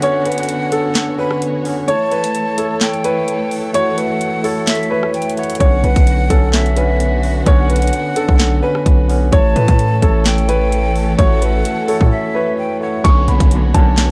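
A heavy, saturated 808-style bass enters at 5.6 seconds beneath a hard-hitting trap kit, whose clipped kick, sharp snare, metallic hats, rim clicks and handclaps sit up front in this melancholic half-time hip hop cut at 129 BPM in B minor. A dark, mellow grand piano carries the melody through a filtered delay over clean electric piano chords and lush, bowed symphonic strings, while a breathy, hollow jazz flute traces a second line with its own delay until 13.0 seconds. A background downlifter then falls in, and a tight brass section adds soft classical-style stabs from 13.5 seconds, all within a dark, small-room production.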